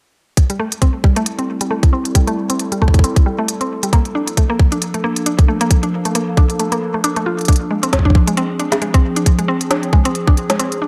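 Glitchy and intricate, this swung IDM excerpt sets a tight, up-front electronic kick and a kit of woody snare and crisp hats, both tape-warm and re-recorded in a large room, under a round, percussive FM mallet pluck running bright arpeggios through chorus, phaser and tape echo, while a warbling, nostalgic pad of detuned waves holds mellow sustained chords from Am7 through Bbmaj7 to Fm6, with filter sweeps moving across both pad and arpeggio.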